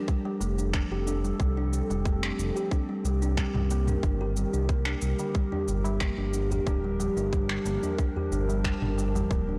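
Organic downtempo in G minor at 91 BPM, this earthy excerpt moves through Fadd9, Cm7 and Gm7 as a warbling, nostalgic pad with phaser, sampler grit and shimmer reverb holds sustained chords over woody kalimba arpeggios trailing delay, a dark, detuned synth bass with tube saturation and sidechain pumping, a tight, overdriven electronic kick up front, a small-room kit of finger snaps, shaker and toms, and a high-tuned, ringing tabla entering in the background at 5.5 seconds, all within a blown-out, overdriven recording.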